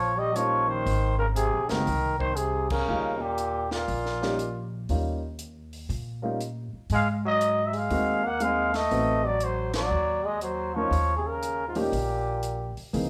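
A growling trumpet carries the melody over a bright, forceful trombone line and a woody pizzicato upright bass, with a dark, mellow grand piano and a compact cocktail drum kit with a punchy kick and high-tuned snare joining at 0.4 seconds. This playful small-group swing and bop piece moves at 119 BPM in Eb mixolydian, cut from a longer performance, with band accents landing at 2.6 and 9.7 seconds. The raspy, breathy trumpet and the bright trombone sit back in a large studio room with moderate reverb, while the bass stays up front and the drums come through dry with dark cymbals.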